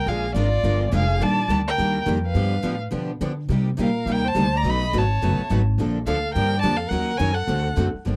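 Bittersweet and fiery, this brief excerpt of acoustic string swing in Bb major races along at 210 BPM, with an expressive bowed violin carrying the melody up front with vibrato and portamento, a distant second violin tracing a softer line beneath it, a woody, thumpy pizzicato upright bass driving the low end, and two picked steel-string guitars comping, one with audible finger squeak, the other bright and boxy in the background, all captured in a dry, close 1970s-style studio sound with light reverb.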